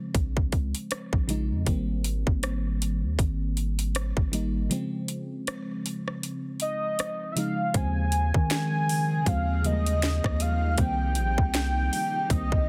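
A deep, sine-toned 808-style bass sits up front in this tender, romantic contemporary R&B excerpt, its long notes hitting with a fast attack and then decaying. Beside it, an electronic trap kit with a hard-clipped kick, sharp snare, metallic hats, rim clicks and a tape-warm edge drives a 4/4 groove with a swung sixteenth-note feel. A soft, round and dark FM electric piano carries the chords from the start, shimmering with chorus and tremolo and a faint noise layer as the harmony moves through Bbm9, Abmaj7, Dbmaj9, Eb13sus4 and Cm7. During a break, a velvety synth lead enters at 6.6 seconds with a smooth sawtooth, triangle and sine blend, a sub octave, chorus and vibrato, taking the melody up front. A very quiet, woody mallet-like pluck adds percussive texture from 7.8 seconds, and a cloudy, evolving granular pad, blurred and detuned with its own reverb, drifts in at 9.0 seconds in the background. 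The mix is dry overall, with a dense, heavily limited modern master.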